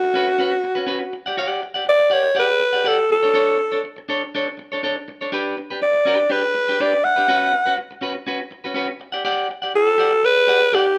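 A breathy alto saxophone carries the melody from the first moment, its raspy, gritty tone softened by a smooth top and a touch of vibrato, played up front in a pop-style solo voice. This is a danceable, glamorous disco cut at 122 BPM in a straight 4/4, lifted from a longer piece and lasting about 11 seconds. Beneath the horn, a clean, picked electric guitar supplies the accompaniment, sitting lower in the mix than the saxophone while still placed up front. The harmony moves through lush extended chords, opening on C#7sus4, passing through Gmaj7, Aadd11/D and G/D, returning to C#7sus4, and settling on Gmaj9 at 9.0 seconds. A light, small-room reverb gives the pair a close, intimate space.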